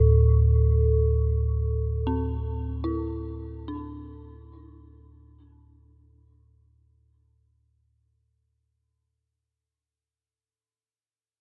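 A huge ambient reverb with a long decay surrounds this dark ambient drone excerpt, which moves in free time with an ominous, shadowy mood on a Dsus2 chord. A deep, rumbling drone sits up front from the start, its sustained tones swelling in slowly and carrying their own built-in reverb. Over it, a bronze singing bowl rings with a bright, airy, metallic shimmer and slow beating, struck with a wooden striker for a meditative glow. At 2.1 s, a detuned synth bell enters with eerie, inharmonic arpeggios, mellow yet up front, softened by chorus as its notes decay. The drone and bowl stop near 7.8 s, leaving the fading bell alone until 10.5 s, a fragment cut from a longer piece.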